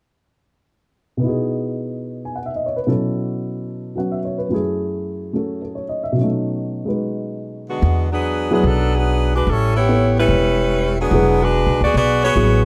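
Big band swing jazz at 146 BPM in 4/4, with a strong swing on the eighth notes and a brassy, swinging mood, moving from E major into E mixolydian. A dark, mellow baby grand piano opens alone at 1.2 seconds, comping intimately with audible action noise and short sustain through changes like Emaj9/B, B7sus4, F#m7 and B9. At 7.7 seconds a clear, close-miked saxophone section takes the melody with jazz-style vibrato, and at 7.8 seconds the second section arrives as a woody, thumpy upright bass joins, played pizzicato on gut strings. The harmony then shifts to dominant colors, cycling through E9, A9 and back to E9. All three parts sit up front in a moderate club reverb, and the excerpt is cut from a longer piece.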